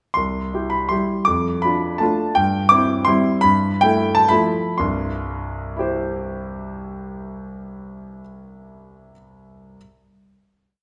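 Heard up front in a wet recital hall with a 1.5-second reverb tail, this sparkling and playful classical piano waltz in C major and 3/4 moves with rubato between 113 and 176 BPM, as a clear, natural concert grand with deep bass and short sustain plays a single-line melody over a waltz bass through C, Dm/F, C/G and G13, slowing down from 1.8 s before settling on a final C chord at 4.8 s.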